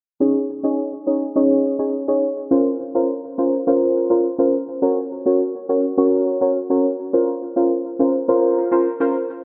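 Set in a straight 4/4 dancehall pulse, this short passage cut from a longer piece carries a hypnotic, tough mood. A deep, mellow chord stab plays solo from 0.2 to 9.2 seconds, sitting up front with a soft, dark tone that blends triangle, sawtooth and sine colours into a fast-attack filter pluck that decays after each hit. Chorus and tape echo thicken the stabs as they move through Absus4, Bbmadd9, Gb and back to Bbmadd9. A filter sweep runs across the whole passage, and a lush hall reverb adds a lingering tail. The sound is worn and warbling, like old cassette tape, with pitch drift and a low-pass filter rounding off the top end.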